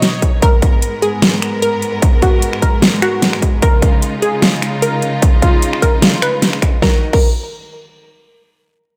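Menacing and chaotic, this heavy wobble dubstep excerpt moves at 150 BPM in a half-time 4/4 feel with swung 16ths, set in Eb minor and moving through Abmadd9 and Dbadd9 chords before landing on Ebm at 6.8 seconds. A distorted, up-front electronic kick drives the track from 0.2 seconds alongside a dubstep drum kit of crash cymbal, finger snaps, metallic hi-hats and a huge snare, both bathed in studio reverb. Above them, a lush, punchy sawtooth unison pluck with a detuned, decaying, gritty 12-bit character and digital delay carries the melody, while a rich, smooth studio string section sustains bowed chords with vibrato and sidechain pumping, all set in light digital ambience.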